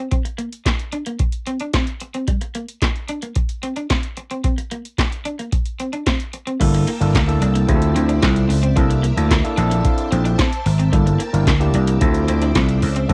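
A lo-fi home cassette recording with light reverb carries this short, funky, slick slice of early-eighties boogie funk in a straight 4/4. It opens with a picked electric guitar riff, slightly broken-up and compressed, glazed in lush chorus, over an analog electro drum machine whose deep kick, punchy snare, handclaps, metallic hats and crash sit up front with a tape-soaked tint and a short room on the snare, clap and hats. At 6.6 seconds the groove fills out: a growly, amped slap bass with transformer saturation pushes forward in the low register, a barky, gritty tine electric piano played through a combo amp adds accompaniment, and a shimmering, warbling string machine of sawtooth violins swells in slowly behind everything with ensemble chorus and a long release. The harmony moves through lush extended chords such as Gm69, Dm9, C13 and Bbmaj9#11. The electric piano steps out with a short fill from 9.3 to 10.9 seconds, and the groove holds its slick pocket to the end.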